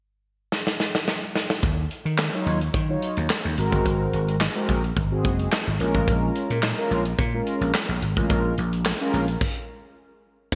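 Early-eighties boogie funk at 108 BPM, danceable and slick, this cut opens with a fill on a modern studio drum kit: handclaps, hi-hat, crash, a medium-tuned snare and a punchy kick, all up front with gated reverb. At 1.6 seconds a bright, growly vintage slap bass enters over Ebm9, Ab9 and Bbm7, and from 2.3 seconds mellow synth brass adds round, detuned sawtooth tones, sustained and shaped with chorus, vibrato and a filter sweep. A stop at 9.4 seconds interrupts the groove, and a lush hall reverb frames the 1980s-style digital production.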